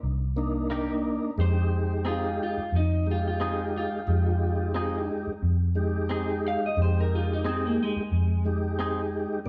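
A smooth tonewheel organ sits up front with chorus vibrato, key click and a slow rotary speaker, spreading a mournful, smoky bed over this swung blues fragment cut from a longer piece, as the chords move from Cm7 to Fm7. A dark, round, foam-muted fingered bass opens at 0.0 seconds with a punchy tone, while a bright, twangy clean guitar adds picked stabs and an electric guitar through a small old amp, slightly broken-up and compressed, carries the melody from 1.4 seconds. The whole band plays live in one moderate stone room, its reverb giving the sound a natural, close-knit depth.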